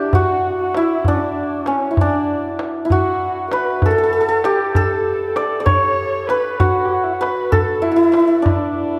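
Persian modal ensemble music in D dastgah mahur, passionate and stately, moving at 65 BPM in a straight 6/8, tuned to A4 = 441 Hz and heard as a nine-second passage cut from a longer piece. Up front, a shimmering, ringing hammered santur carries the melody, while a single bowed kamancheh plays a dark, woody second line with vibrato and portamento, sitting close but lower in the balance. A tight tombak struck with hard hands drives the percussion from 0.1 to 8.6 seconds, all set in a moderate recital hall reverb.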